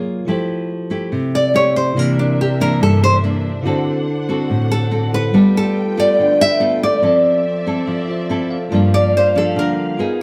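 Bossa nova with a wistful, smooth mood, taken from a longer piece in a straight 4/4. A fingerpicked, classical-style nylon-string guitar carries the melody as a solo throughout, sitting up front with a warm acoustic tone. A second nylon-string guitar with fresh strings fingerpicks the accompaniment just beneath it. A bell-like, bright and clean tine electric piano accompanies and slips in a short fill at 8.1 seconds. From 2.0 seconds, a muted string section enters softly with lush, veiled bowed chords, dark and con sordino with vibrato, over harmony moving through Fmaj9, C9, D7, G9, Dm9/F and Gm7. The band sounds as if playing live together in one room, with a moderate studio reverb.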